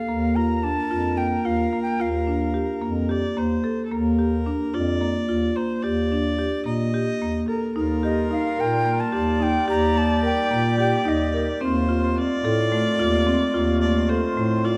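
Set in a moderate recital hall reverb, this hopeful, shimmering excerpt of contemporary chamber music moves in an uneven 7/8 metre, with woody, bright marimba arpeggios, a clear, earthy viola second line with light vibrato, and a dark, soft-attacked bass clarinet held up front. A breathy jazz flute with a crisp, chiffy attack carries the melody, falling silent after 2.8 seconds and returning at 8.0 seconds. A distant, roomy woodwind section adds sustained background chords from 7.8 seconds.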